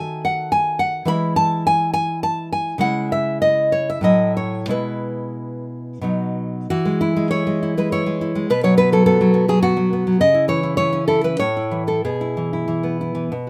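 A bright, fingerpicked nylon-string guitar sits up front in this nostalgic, tender romantic solo piece in E major and 3/4, moving with a rubato feel between 87 and 108 BPM through chords such as D#dim, C#m and F#m7/A before a new phrase begins at 6.7 s, all captured with light reverb in a rough home demo mix cut from a longer work.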